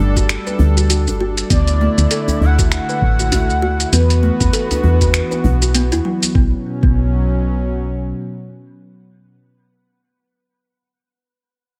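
Mystical and earthy, this organic downtempo fragment from a longer piece moves in a relaxed, swung 4/4. A breathy, flute-like synth lead carries the melody with gentle vibrato, chorus and delay until 5.7 seconds. Beneath it, a smooth, detuned analog pad holds sustained chords with a pumping sidechain feel, while an up-front, woody FM bass sits dark and round at the bottom. A mellow, hollow-toned kalimba plays delayed arpeggios, and a dusty, gritty sampler-style kit of finger snaps, hi-hat and shaker joins a thumpy, compressed electronic kick and a deep djembe with metal rattles in the background. The harmony drifts from Gmaj7sus2 through D6 and E5 before settling on B5 at 6.4 seconds, and the pad outlasts the bass, lingering in a digital ambience until 9.4 seconds.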